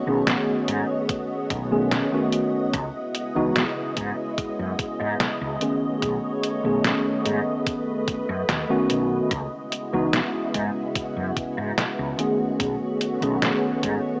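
A mellow tine electric piano, treated with analog chorus and tape echo, opens this hazy, melancholic vaporwave fragment alongside a silky, vintage string machine that holds slow-attack ensemble-chorused chords as the harmony drifts between B9 and C#m11. A woody, growly fretless bass with tube saturation enters almost at once, a detuned 8-bit drum machine supplies up-front hi-hat and a medium-tuned snare, and a thumpy electronic kick joins at 1.1 s. A lush hall reverb and a cassette, small-speaker sound wrap the piece, which is cut from a longer work.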